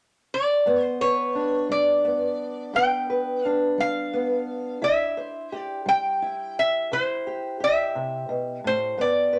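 A lap resonator guitar leads this short excerpt of acoustic country blues, its metallic, nasal slide lines played with fingerpicks and sitting up front from 0.3 seconds. Beneath it, an old ladder-braced acoustic guitar enters at 0.7 seconds, fingerpicked with dark, woody, boxy tone from aged strings, also placed close in the mix. The pair moves at a slow 58 beats per minute in a straight 12/8 lilt, rooted in G mixolydian as the harmony sits on G before shifting to C at 4.8 seconds. The mood is swaggering and rollicking, a duo feel carried by the resonator's warm, metallic bite against the rustic accompaniment. A moderate studio reverb gives the two instruments a modest sense of room.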